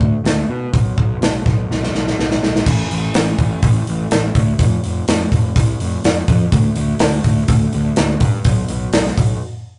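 A rough rehearsal-room recording with light reverb, warm saturation and rolled-off highs captures an anthemic, restless stretch of quiet-loud alternative rock, cut from a longer piece. An overdriven, fuzzed picked electric bass sits up front with a round tone, beside a big acoustic rock kit with a punchy kick, medium-tuned snare, hi-hat and bright crash cymbal. A drum fill from 1.7 to 2.7 seconds leads into the next section, and both parts stop at 9.3 seconds for a brief break.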